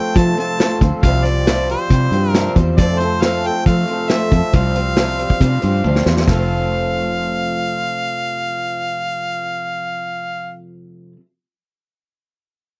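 A straight 4/4 pulse at 137 BPM drives this hopeful, jangly folk rock and heartland rock passage in F major, cut from a longer piece, with a vintage drum kit playing a punchy, gritty, saturated beat up front until a fill at 5.8 seconds, after which it stops at 6.4 seconds. A bright harmonica carries the melody up front with light vibrato and scooped notes, over a shimmering, octave-doubled picked twelve-string acoustic guitar, a twangy, slightly broken-up electric guitar riff through a small old amp, and a dark, round fingered electric bass. The harmony moves between F and Csus4, captured in a dry, close 1970s-style studio recording.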